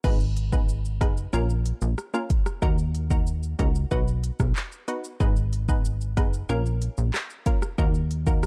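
A dark, warm production with digital ambience frames this tough, sultry dancehall fragment, cut from a longer piece, moving at 93 BPM in a straight 4/4 over a cycle of Abm, Bbm, Ebm and B. Up front, an electronic afro-pop kit sets a deep kick and smooth hi-hats alongside handclaps, rim clicks, shaker and crash cymbal, while a punchy, funky analog bass blends sawtooth and square waves with a decaying, fast-attack filter pluck. Above them, a crisp, detuned wavetable chord stab with a wave-folded triangle tone adds bright, short-decaying digital hits.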